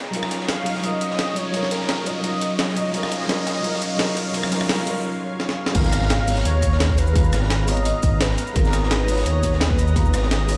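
A deep, rumbling detuned saw bass sits up front once it arrives at 5.8 seconds, landing together with a punchy, layered electronic kick at the drop of this lush, melancholic liquid drum and bass passage. Before that point, a build-up carries a background riser and a filter sweep on the pad. A brief break and a drum fill lead into the drop, where an impact rings out until 7.2 seconds. A soft, felt-muted upright piano with audible action noise and dub echo plays the accompaniment throughout. It is joined by a thick, airy unison pad that holds sustained chords, with chorus and sidechain pumping. From 0.5 seconds a velvety, full-bodied synth lead carries the melody with vibrato, chorus and dub echo. Two breakbeat kits drive the groove: a compressed, pitched-up sampler-style kit with gritty, tape-toned snare, hi-hat, rim click, cabasa and crash, and a darker, saturated acoustic kit with high-passed hats and snare tucked in the background, all set in a moderate hall reverb that sounds as though it is playing through a big system in a bare stone room.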